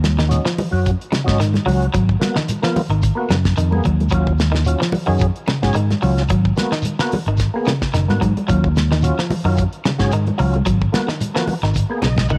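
A funky, driving afrobeat groove in Eb minor at 110 BPM opens with a round, punchy fingered electric bass up front, a dry, damped 70s drum kit with a fat snare and tight kick, and high-tuned congas and a grainy shekere sitting in the background. Within the first second, a bright, twangy electric guitar at the edge of break-up joins with picked arpeggios, and an overdriven tonewheel organ follows at 0.3 seconds, gritty and percussive through a slow rotary speaker with chorus vibrato. The harmony rocks between Ebm7 and Abm7, with a light sixteenth-note swing driving the whole band forward. Near the close, the organ plays a fill from 11.8 seconds and the drums add a fill at 12.2 seconds. The sound is framed by small room ambience, in this section cut from a longer piece.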